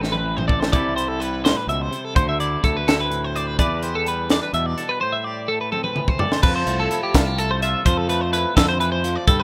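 Wistful and restless, this short math rock and midwest emo excerpt moves at 84 BPM in a straight 6/8, with chords drifting from Am7 through C69, Dsus2 and Em7 before turning to Fmaj7 when a new section arrives at 6.4 seconds. A bright, compressed twelve-string electric guitar sits up front with spring-reverb arpeggios, over a twangy, scooped electric guitar accompaniment and a dark, round fuzz bass with overdrive. The crisp fusion kit, featuring a high-tuned snare, a punchy kick and a pumping small-room sound, opens with a fill and adds another at 5.7 seconds, all in a dry, rough home-demo mix.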